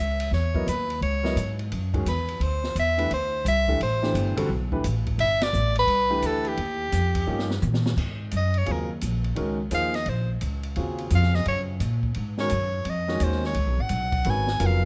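A bright soprano saxophone with light vibrato and a woody pizzicato upright bass open this searching, hypnotic modal jazz excerpt at a swinging 172 BPM, soon joined by an open drum kit with dark cymbals, a high-tuned snare and a boomy kick, and by a warm baby grand piano, with a band accent at 5.4 seconds and a drum fill leading into an up-front soprano saxophone solo over Ab mixolydian from 8.0 seconds, in a close, detailed recording with light reverb.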